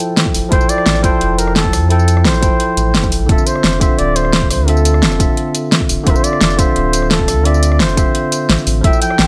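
Dreamy and soulful, this 173 BPM liquid drum and bass cut in D minor moves from Fmaj9 to Dm9 as a breathy flugelhorn with light vibrato and scooped notes plays a mellow jazz-style solo through delay over a clean tine electric piano sent through digital delay, an up-front pop drum kit with a fat snare, metallic hats, rim clicks and tambourine, a punchy, layered electronic kick and a deep, round sine sub bass that both enter at 0.3 seconds, with the kick briefly dropping out at 8.5 seconds, the whole mix set in a light reverb.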